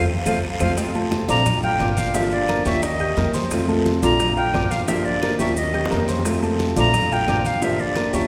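An airy silver concert flute sits up front and carries the melody with a straight, tongued, expressive tone and rolled-off highs, over a sunny, relaxed Cuban son and guajira groove at 175 BPM in 4/4 and F major. A fingerpicked flamenco guitar on fresh strings plays the accompaniment, while a dark baby grand piano with short sustain adds mellow arpeggios, and a steel-strung upright bass plays pizzicato lines. The chords cycle through F, Bb, Gm7 and Eb7. From 0.3 s a quiet Latin percussion section joins: low-tuned congas played with hard hands, round bongos, vintage claves, a raspy guiro and grainy maracas. The piece opens with a band accent and drum fill, and another fill arrives around 5.4 s. A long, wet concert-hall reverb surrounds the ensemble in this short cut from a longer piece.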